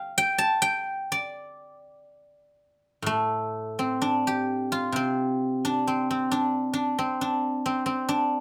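Set in a moderate studio reverb, this short, elegant and contemplative piece of Chinese traditional solo plucked-string music, cut from a longer work, features an up-front acoustic guzheng played with fingerpicks, its bright, silvery tone ringing across a span from A2 to A5 in a free rubato feel as it moves from an opening passage into a second section at 3.0 seconds.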